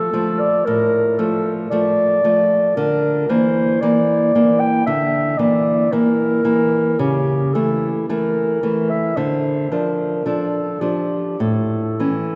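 Rubato and unhurried at 56 BPM in 4/4, this solemn, melancholic romantic duo in D minor is a brief passage cut from a longer piece, moving from Dm through a rootless C9/D and A/C#, back to Dm, and on to A. A dark, distant clarinet sings the classical-style melody up front from G4 to G5, while a small, fingerpicked nylon-string guitar supports it with a warm acoustic accompaniment from A2 to D4. The pair is heard in a church or concert hall, where a wet, lingering church reverb surrounds the playing.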